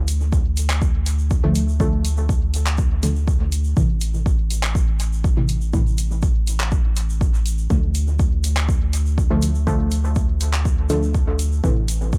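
Meditative and nocturnal, this dub techno excerpt moves at 122 BPM in D minor, with a muted, detuned sawtooth chord stab carrying chorus, phaser, sidechain pumping and dub echo under a filter sweep across Dm and Am, a round sine sub bass pumping up front, a deep, tape-warm electronic kick entering at 0.3 seconds, a deep house kit of handclaps and hi-hat trailing dub echo, and a grainy, bright egg shaker, all in a dry, close mix.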